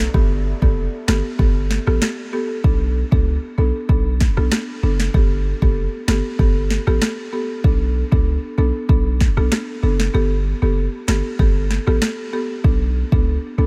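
A straight 4/4 dancehall groove at 96 BPM rides on an electronic afro-pop kit with a deep kick, sharp snare and rim click, up front with a tape-warm tone, while a boomy, sine-based 808-style bass with a noise layer and fast, decaying attack sits equally forward in the low end. Beneath them, a dry, close-miked buzzing marimba played with medium mallets on hardwood bars loops a woody Gadd9 to Bm7 progression, its level pumping against the sidechain in a small room. The mood is bouncy and hypnotic in this cut from a longer piece, with the kick dropping out briefly at 10.1 seconds before returning.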